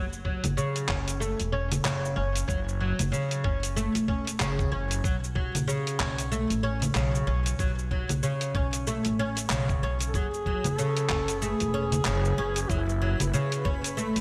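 A plectrum-plucked oud opens this mystical, earthy slice of organic downtempo, its woody double strings sounding deep and up front as it spins arpeggios through a low-pass filter and digital delay. Beneath it, a dark, gut-strung upright bass plays pizzicato, its thumpy tone pumping under sidechain compression. A gritty, tape-warm sampler-style kit of cabasa, congas, handclaps and hi-hat sits close in the mix with gated reverb and a swung sixteenth feel, joined by a compressed electronic kick with natural pitch. At 10.1 seconds a mellow, distant duduk enters for a short folk-style solo, its vibrato and scooped notes echoing through digital delay as the harmony settles on F#sus2. From 10.6 seconds a faint, twinkling granular texture with FM sparkle, octave-up shimmer and a long release glows in the background, all framed by a moderate plate reverb and bright 1980s-style digital production in this piece cut from a longer work.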